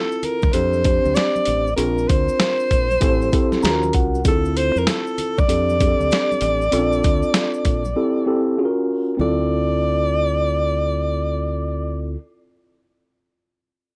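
A clear alto saxophone and a mellow, clean tine electric piano open this cool jazz-hop excerpt together, the sax carrying a jazz-style solo melody with vibrato, subtone and scooped notes while the up-front keys add a fill between 3.3 and 4.2 seconds, both bathed in plate reverb. A gritty, compressed, pitched-down boom bap kit with a thumpy kick and medium-tuned snare drives the swung groove until the drums drop out at 7.8 seconds, underpinned by a dark, round fingered electric bass. Soft-handed maracas and congas sit in the background of the small, moderately reverberant room as the minor-key chords move through rich ninth and seventh harmonies.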